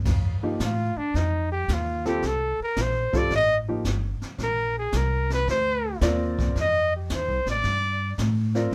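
A woody, growly upright bass and a brushed jazz kit with dark cymbals and a boomy kick open this playful, sophisticated small-group swing excerpt at 0.1 s, an intimate grand piano with audible action noise joins at 0.4 s, and a clear, close-miked trumpet with light vibrato takes the solo lead from 0.6 s, the band captured live together in one room with light reverb.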